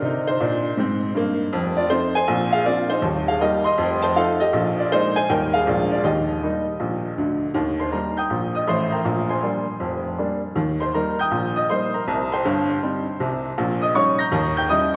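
A solo upright piano opens straight into a playful, swinging stride jazz passage, cut from a longer piece. The instrument sounds clear and woody and sits up front, covering a broad span from Eb1 up to Bb6. The harmony moves through a lively turnaround of minor, dominant and ninth chords before settling home, and the same strain returns at 7.6 seconds for a second pass. That repeat reaches toward richer colors, with a Bb13 chord and a closing Eb7b9 at 14.3 seconds. The piano rings out in a reverberant church or concert hall, whose long 2.1-second tail gives the swung rhythm a spacious glow.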